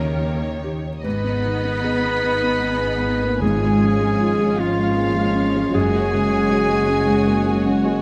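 A moderate scoring-stage reverb gives this short cut from a longer cinematic film cue a spacious bloom. The hopeful, moving orchestral passage unfolds at a slow, rubato 52 BPM in 6/8 in G# dorian, moving from D#7 through G#m and C#/G# to F#sus2. A felt-muted upright piano with thick felt carries an intimate, mellow accompaniment with a smooth viola section in the background, while a ringing concert harp plays very quiet fingerpicked arpeggios and lush cello and double bass sections hold the low end. A lush violin section with portamento sings the melody over a darker, woody, distant violin line, and a pure, hollow flute sounds briefly at the opening before a solo clarinet, up front in a classical style, enters at 1.0 s. Very quiet timpani struck with hard mallets come in at 3.4 s, articulate amid the bowed strings.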